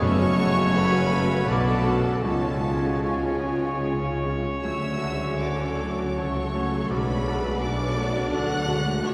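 Brooding and passionate, this nine-second excerpt from a romantic movement for piano and orchestra moves in a rubato 3/4 at roughly 74-85 BPM, its harmony passing from F#m through Bm7 and C# to Dmaj7 before settling back on Bm7 at 6.9 seconds. A clear grand piano carries the melody with long sustain and audible action noise, set somewhat back in the mix, while a dark, woody chamber violin section sings the line high above it with vibrato. A second line is shared among a rich, distant chamber violin section, a pure straight-toned concert flute, a warm oboe and a dark, soft-attacked clarinet, the winds very quiet. A lush, focused viola section gives accompaniment, mellow French horns and a vintage-toned trombone section hold sustained chords, and a distant, roomy trumpet adds stabs. The bass is built from a smooth, even cello section, a soft-attacked double bass section and a tuba, with close, dry timpani sounding only until 3.4 seconds, all heard from further back in a church reverb that lingers for 3.5 seconds.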